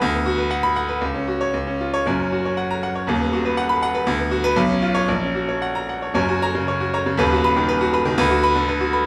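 A large studio's lush reverb surrounds this short cut from a longer piece, giving the sense of hearing it from further back in the room, while the brilliant, open grand piano still sits up front with a crisp, short sustain. It is a heroic, sparkling classical virtuoso study in F# major and 2/4, played solo with rubato at about 109-123 BPM, the piano ranging from D#1 to B5. Its opening phrase runs through chords like Bm/D, C#7/B and F#/A#, then begins again at 6.2 seconds, returning to F# and B/D# before closing on Bm/D.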